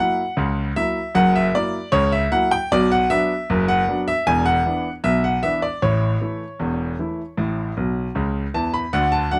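A straight 2/4 pulse at 77 BPM carries this playful, cheerful ragtime piece for solo grand piano, whose clear, intimate tone sits up front and close, with audible action noise and a natural sound in a small room with moderate reverb, ranging from E1 to B5 through F#7, Bm, E5 and A before a piano fill arrives at 7.8 seconds, near the end of this brief 9.4-second cut from a longer work.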